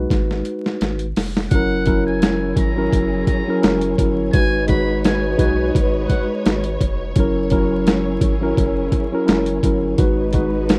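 A worn, slightly out-of-tune electric piano with cassette-tape colour and a deep sine sub bass open this dark, reflective boom-bap hip-hop passage cut from a longer piece, as a gritty, overdriven sampler drum kit with a thumpy kick comes in on a fill, then at 1.5 seconds a breathy, buzzy muted trumpet takes a jazz-style solo melody until 6.3 seconds over expressive bowed strings with portamento, set in a rough home-demo mix with vinyl crackle and light reverb.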